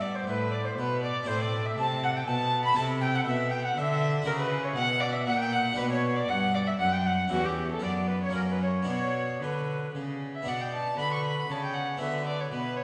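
Solemn and introspective, this short cut from a longer baroque-style sonata movement with continuo moves at 118 BPM in 3/4, its rubato phrasing giving it a reflective, unhurried sway. The alto recorder carries the melody with a pure, woody tone, vibrato, tongued notes and a chiff, sounding distant. A single dark violin traces the second line in period style, its gut strings giving a nasal, slightly reedy edge. Beneath them, one rich-toned cello bowing in period style anchors the bass, and a brilliant, plucked French-style harpsichord with octave strings fills in the accompaniment. The harmony settles into B minor from 4.3 s, and a new section begins at 10.5 s, with all four parts playing through to the end. A wet, resonant church or concert-hall acoustic with a long 2.2-second reverb tail surrounds the ensemble.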